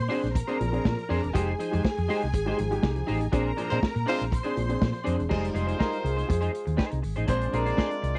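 A lush, bowed string section with a focused, distant sound opens this glamorous, danceable disco excerpt at 121 BPM in F dorian, joined at once by a round, amped hollow-body bass fingered up front. Almost immediately a muffled vintage drum kit with dark cymbals and a tight kick settles into a straight 4/4 groove, alongside a bright, clean semi-hollow guitar given an analog chorus and a grand piano whose action noise is audible. The harmony moves between Bb9 and Fm7, and a punchy horn section with light vibrato arrives at 3.7 seconds, adding pop-style stabs during a band accent. The strings drop out at 5.3 seconds as the intimate piano takes a solo over the rest of the band. The sound is dry and close, in the manner of a 1970s studio recording, with the drums and bass sitting loudest in the mix.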